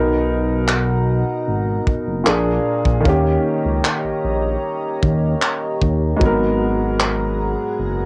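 Tender and romantic, this short contemporary R&B fragment moves at an unhurried, straight-feel pace in 4/4, drifting through Bmaj7, A#7, D#7 and G#m9. A concert grand piano carries the accompaniment up front with a warm, intimate tone, deep bass and audible action noise, while a chorused pulse-width pad holds sustained chords beneath it with a shimmering, mellow, retro glow and a sidechain pumping motion. A smooth, dark synth bass sits up front too, its gliding portamento and vibrato giving the low end a rounded sawtooth-and-sine character. A tight funk drum kit of handclaps and a tight kick enters at 0.7 seconds and drops out at 7.2 seconds, sounding acoustic, dry and natural. The piano, pad and drums all carry a cassette tape coloring, and the whole piece has a close, home-recorded feel with very little reverb.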